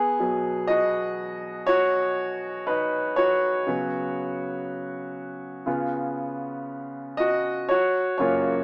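Emotional and heartfelt, this brief pop fragment at 60 BPM features a clear concert grand piano playing alone, its deep bass and long sustain sitting up front in a moderate studio reverb with a small-speaker character as it moves from G#m7/B through C#7sus4 and C#7 to land on F# at 7.7 seconds.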